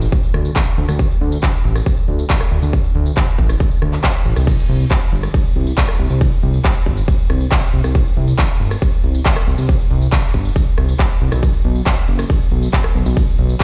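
A straight 4/4 pulse drives this emotional, soaring uplifting trance fragment, cut from a longer piece, with an overdriven, punchy electronic kick sitting up front from 0.1 seconds. Around it, a layered big-room dance kit adds crisp hi-hats, handclaps, ride and crash cymbals, rim clicks and tambourine, all carrying an overdriven grit while sitting lower in the mix. The fat analog bass holds the low end between F#1 and D2, its warm, detuned sawtooth tone thick and sustained with a fast attack, a filter sweep, and pronounced sidechain pumping. Bass and drums run together for the full 13.6 seconds as a single driving section. The sound suggests playback on a big system in a bare room, with a large studio reverb framing otherwise dry, forward parts.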